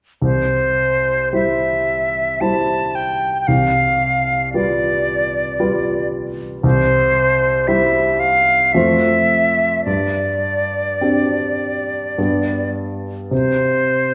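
Heard through the wet bloom of a recital hall, this serene romantic classical fragment in C major sets a pure, bright silver concert flute, carrying the melody with vibrato and a soft attack, over a warm, natural baby grand piano accompaniment, both up front from 0.2 to 14.1 seconds in a slow, rubato 3/4 of 51-58 BPM that moves through C, G7/C, F and Gsus4 before arriving on G.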